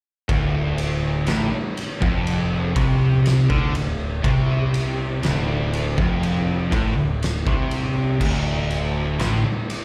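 Stoner and doom metal with an ominous, sludgy mood, heard as a live gig through the venue's PA with recital hall reverb, cut from a longer piece that sits on a single Dm chord. A bright, double-tracked cranked stack guitar and a thick fuzz guitar with slapback echo, tucked in the background, grind out the riff alongside a growling picked bass given overdrive and tube saturation. An oversized low-tuned acoustic drum kit sits up front with a boomy kick, fat snare, dark crash and ride cymbals and a pumping room sound, ringing on until 9.8 seconds after the strings stop at 9.5.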